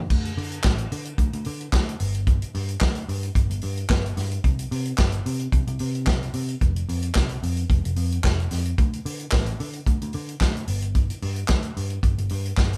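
A picked electric bass opens the clip at 0.0 s, dark and round with a foam-muted, amped tone that sits up front while ranging from F1 to D3. A vintage acoustic drum kit joins at 0.1 s, also up front, with a tight kick, a medium-tuned snare, hi-hat, crash cymbal and handclaps, sounding warm and natural with a rolled-off top and a studio-room character. This is a glamorous, sultry disco groove in D minor, moving at 111 BPM in a straight 4/4. The two parts sound like a band playing live together in one room, lightly touched by reverb. Both carry on to the close at 12.8 s in a single continuous section cut from a longer piece.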